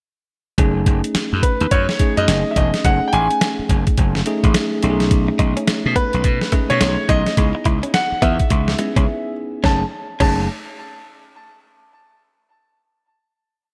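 A gritty, overdriven slap bass sits up front in this punchy, slick new jack swing piece at 106 BPM in F# dorian, bouncing through a swung synth-funk line with muted ghost notes against a thumpy, pitched-down boom bap drum kit with gated reverb and a hard-swung drum-machine beat. A bell-like tine electric piano with lush chorus pushes rootless chords over F#m69, B13 and C#m9, a clear concert grand with delay enters at 1.4 seconds with a motif-based melody, and a clean, direct-recorded electric guitar adds a muted, picked single-note line from 5.3 seconds. After a brief break at 9.1 seconds, the piece settles on a final F#m69 chord, all in a bright 1980s-style digital production with light ambience.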